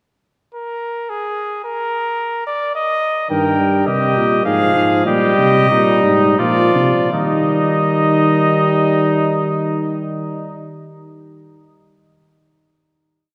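Classical imitative canzona for brass ensemble in Eb major and 3/4, lively and joyful, moving between 78 and 109 BPM and slowing down from 2.5 to 7.1 seconds. An up-front trumpet opens the melody alone at 0.5 seconds, and at 3.3 seconds a vintage-toned second trumpet, a dark close-miked trombone and a mellow, punchy tuba join, each carrying its own line of imitative counterpoint. The whole piece rings in a wet church reverb, and the exposition settles onto a final Eb chord from 7.1 seconds.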